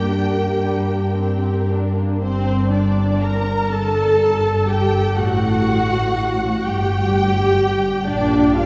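Classical string-orchestra writing in G minor, this slow, yearning and melancholic romantic movement drifts in 6/8 at around 37-42 BPM in dotted quarters with a free, rubato feel, cut from a longer piece. A distant, expressive first violin section carries the melody over a rich second violin line set in the background, while a smooth, even viola section sits up front with the accompaniment. Focused cellos with a smooth top and vibrato-laden double basses share the bass, all bowed, bathed in a long cathedral reverb heard from further back, as the harmony turns from Gm to Gmadd9 at 2.2 seconds and settles on Bb at 8.1 seconds.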